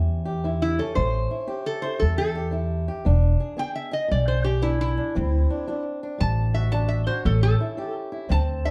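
A nasal, metallic lap resonator guitar, played with slide and fingerpicks, carries the melody up front from 0.6 seconds in this gritty, swaggering acoustic country blues fragment, cut from a longer piece, with a swung 4/4 feel. Beneath it, a boxy, woody fingerpicked acoustic guitar on old strings gives swing-style accompaniment, while a pizzicato upright bass with steel strings sits prominently in the mix and moves through A7, E7 and D7 before returning to A7. Moderate studio reverb places the group a little further back in the room.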